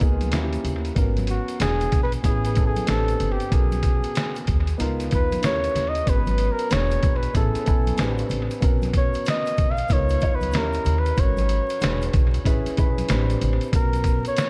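A gritty, pitched-down sampler-style drum kit with a thumpy kick sits up front over a woody pizzicato upright bass, a dark, long-sustaining grand piano soaked in dub echo, and bright congas and egg shaker tucked in the background. This mellow, cool jazz-hop groove moves at 94 BPM with a 16th-note swing through lush seventh and extended chords. At 1.3 seconds a close-miked flugelhorn enters to take the solo, with vibrato, scooped notes and its own dub echo, all framed by vinyl crackle and an echo-heavy mix in this cut from a longer piece.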